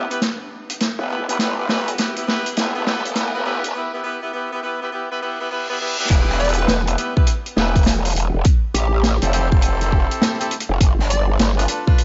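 A small, lightly reverberant room frames this playful, swaggering glitch hop excerpt, with a high-pass filter trimming the low end of the ambience and the top capped, and a swing feel on the sixteenths. A tight, jazz-style horn section punches clear stabs up front through tape echo, sidechain pumping and a low-pass filter, while a growling, wobbling bass with tube saturation and chorus holds down the low end. A vintage acoustic kit with dark cymbals and a medium-tuned snare carries the build-up, opening with a drum fill while a filter sweep runs and a background riser and reverse cymbal lead into the drop at 6.1 seconds. There a punchy, layered electronic kick joins, and from 6.4 seconds a catchy, detuned square-wave unison lead with a sub octave sits in the background, trailed by its own tape echo. The harmony shifts between Fmaj7 and Em chords before landing on G7.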